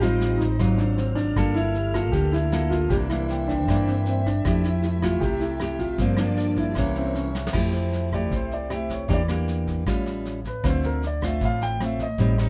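A fingerpicked nylon-string guitar sits up front in this sophisticated, romantic bossa nova excerpt, joined from the first moment by a mellow, dark baby grand piano carrying the melody, a round, amped fingered electric bass, a brush drum kit with a boomy kick and rolled-off top, a grainy tube shaker in the background, and a lush string section holding soft-attack chords low in the mix. Metallic, ringing vibraphone touches with slow motor vibrato appear briefly from 3.3 seconds and again from 7.0 seconds. The harmony moves through rich jazz colours such as Gm9, C7b9 and Fmaj9, giving the straight groove an elegant feel. A drum fill at 7.4 seconds leads into the second section, where the strings fall away and the piano takes a solo from 7.5 seconds, its long sustain coming through clearly over the guitar, bass and drums. The sound is dry and intimate, with little reverb.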